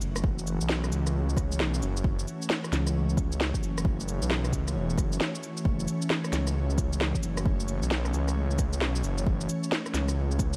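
An airy, ethereal pad holding an F#m7 chord opens this ghostly, melancholic future garage piece, arriving together with a swelling detuned saw bass and a set of electronic cabasa, rim click, shaker and woody snare. The tempo sits at 133 BPM in 4/4 in F# minor, with the 16ths swung at 63%, and an overdriven, deep electronic kick enters at 0.2 seconds, layered and re-recorded in a large room. The pad is mellow and slow to bloom, built from detuned triangle and sawtooth voices with a noise layer, ensemble chorus, its own reverb and a long release, and it pumps against the sidechain. Below it, the bass is menacing and evolving, a fast-attack unison of detuned sawtooth and sine with a filter swell and tube saturation, also pumping and placed up front alongside the produced drums. Light reverb, digital ambience and a layer of vinyl crackle haunt this short passage, which is cut from a longer piece.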